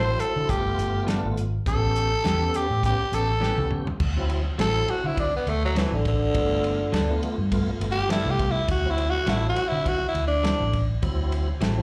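Straight eighths with a light sixteenth-note swing drive this rollicking, gritty soul blues at 102 BPM in D mixolydian, where a raspy, growling tenor saxophone with slapback echo leads up front and launches a solo at 4.0 s after a short drum fill, over a lightly overdriven tonewheel organ turning through a slow rotary speaker, bright, clean guitar stabs, a round, foam-muted vintage bass and a tight soul drum kit with dark cymbals, heard through a club PA with light reverb in this cut from a longer piece.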